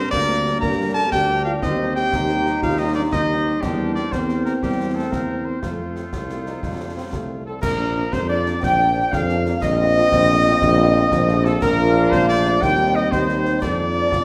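A spirited, proud military-style march for wind band in 6/8 at 120 BPM, in Bb major, cut from a longer piece and set in a wet recital hall with a 1.3-second reverb. A clear cornet carries the melody up front over a mellow tuba bass, with a tight woodwind section and a dark euphonium adding second lines in the background, sustained chords from a warm trombone section, soft French horn accompaniment, and concert snare, bass drum and clash cymbals with dark cymbal tone. The euphonium stops at 7.5 seconds, where an airy, hollow flute section enters very quietly with vibrato and a crisp attack as the music moves from a Gm opening toward a Bb close.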